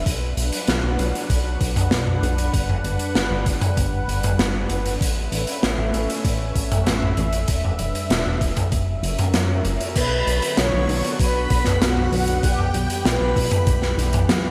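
A bright, 1980s-style digital production with light reverb opens this nostalgic, driving synthwave excerpt in B minor at 97 BPM, where a lush, detuned unison pad with sidechain pumping and a glossy, wave-folded synth bass carry chords moving from Bm through Gmaj7, Aadd9, Em7 and F#7. A thumpy, tape-warm electronic kick sits under a gritty, up-front garage drum kit of crash, hi-hat, snare and toms, its bright stone room shaped by gated reverb. At 10.0 seconds a round, brassy synth lead with cassette-tape colour and digital delay takes the melody, joined by a shimmering vintage string machine of violins set in the background.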